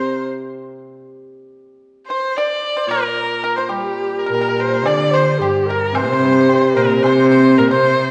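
A wet recital hall reverb surrounds this graceful, wistful Chinese chamber ensemble piece, cut from a longer work and moving in a free rubato. A clear, focused erhu sings the melody up front with vibrato and portamento, joined by a dry, percussive pipa played with fingerpicks and a shimmering, ringing hammered dulcimer underneath. At 4.3 seconds a reedy bamboo xiao enters in the background and a rich, smooth-topped bowed cello adds a low line up front, while a woodblock joins from 4.9 seconds at the back of the mix.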